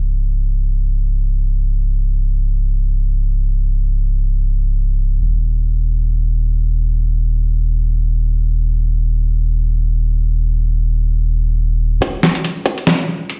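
The piece moves in free time, and for the first 12.0 seconds it is held only by a soft dub sub bass that sits deep and up front, its round, sustained tone blending triangle and square wave with a fast attack. This brooding, cavernous piece of deep dubstep, cut from a longer track, sounds as if it is played on a big sound system in a bare room, with digital ambience and a large studio reverb. At 12.0 seconds a build-up with a filter sweep begins. A punchy, layered electronic kick, overdriven and re-recorded in a small room, joins until 12.8 seconds. Alongside it comes a trip hop sampler-style kit of hi-hat and medium-tuned snare, compressed, pitched down and muffled, which runs with the bass to the close at 13.4 seconds.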